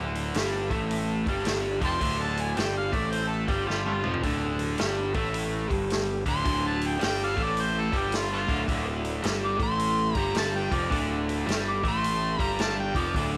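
Brooding and gritty, this blues rock and southern rock power-trio piece swings at 108 BPM in D minor. A biting, double-tracked overdriven guitar riff sits up front over a punchy fuzz bass and an acoustic vintage kit with a tight kick, a medium-tuned snare and a drum fill at 3.7 seconds. At 1.9 seconds a distant, overdriven harmonica enters with a jazz-style solo marked by light vibrato and tongue slaps, all set in a light small-room reverb.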